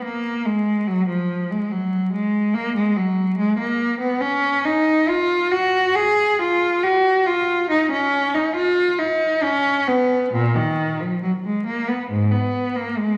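A single bowed cello sings up front with a rich, focused tone, vibrato and a smooth top, carrying a flowing, solemn baroque-style suite movement in Eb minor at about 70 BPM in a loose, rubato 4/4. It is tuned to A4 = 445 Hz and spans Ab2 to Ab4, set in a wet recital-hall reverb over vinyl crackle, in this 13.2-second excerpt cut from a longer piece.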